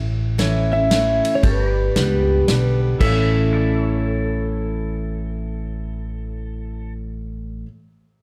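A dark, lightly reverberant mix carries this easygoing, sunny slice of honky-tonk and classic country, swinging in 3/4 at 114 BPM in A mixolydian as the chords move from A to G and back. Up front, a bright, full-bodied dreadnought acoustic guitar and a woody, thumpy gut-string upright bass anchor the groove. A clean, compressed pedal steel plays fingerpicked slide melody over sustained chords from a second pedal steel, while a warm, intimate upright piano with audible action noise sits in the background. A natural small-room drum kit with a punchy kick plays only from 0.4 to 3.2 seconds, and a bright, twangy electric guitar adds a single-note second line in the background from 3.0 seconds.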